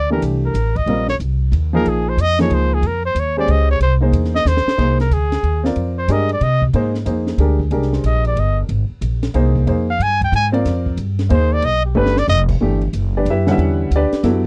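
Cool and hypnotic, this modal jazz waltz swings lightly in three and is cut from a longer performance. A breathy, mellow trumpet carries the melody as a solo from the opening moment, its smooth top and light vibrato sitting up front until it drops out at 12.4 seconds. Beneath it, a woody, growly pizzicato upright bass anchors the low end, while an intimate baby grand piano supplies the accompaniment with short sustain and audible action noise. A compact cocktail drum kit, dark and rolled-off, stays further back with ride, hi-hat, crash, a high-tuned snare and a punchy kick, adding brief fills just before 4.8 seconds and again near 12.0 seconds. The dry, close studio sound has a 1970s character and little reverb, keeping each instrument natural and present.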